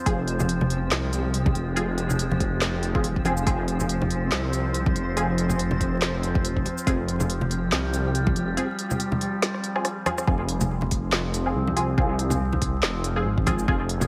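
A half-time 4/4 groove at 141 BPM, swung on the 16ths, drives this dark, brooding deep dubstep piece in F minor, cut from a longer piece and sitting entirely in the drop. A deep layered electronic kick and an up-front deep house kit with woody snare, smooth hats, handclaps, rim click and shaker are joined by bright, close, dry congas, with a drum fill at 9.4 seconds, while a rumbling, saturated, detuned saw bass anchors the low end. Above it, muted dub chord stabs with filter plucks, phaser and dub echo float over a resonant overtone-sweeping drone, and a mellow, flickering granular texture murmurs in the background until 10.3 seconds, all under a veil of vinyl crackle and light reverb.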